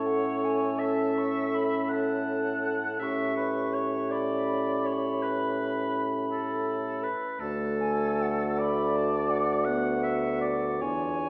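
Heard from further back in a recital hall, the recording is soaked in a reverberant wash, its top end dulled and softened. This is a tender, serene slow movement for wind quintet in a lilting compound metre, played with flexible, breathing rubato, and it is cut from a longer piece. The silver concert flute carries the melody high above the group with an airy, straight tone and crisp attack, though it sits at a distance, while the warm oboe, up front with a gentle vibrato, shapes a second line just beneath it. The mellow French horn and a mellow, roomy clarinet, the latter tucked into the background, fill in the accompaniment. The bassoon, also up front with a smooth top, anchors the bass as the harmony moves from A to A7 around 3.0 seconds, to D at 7.4 seconds, and to Bm/D at 9.7 seconds.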